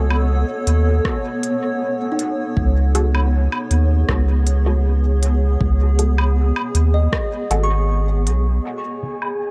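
Meditative and deep, this short ambient dub excerpt moves at 79 BPM in a straight 4/4, with a cloudy, blurred granular pad holding sustained chords from F#madd9/C# to C#m7 over a round, up-front sub bass and muted, detuned chord stabs carrying phaser and dub echo in the background. A crisp, low-pass-filtered electronic kit of hi-hat, rim click and woodblock with dub echo runs throughout, a layered electronic kick enters at 1.0 seconds, and a woody kalimba adds ringing arpeggios with dub echo from 2.1 seconds. An airy, breathy wind-like tuned noise texture enters up front only at 8.8 seconds, all set in light digital ambience.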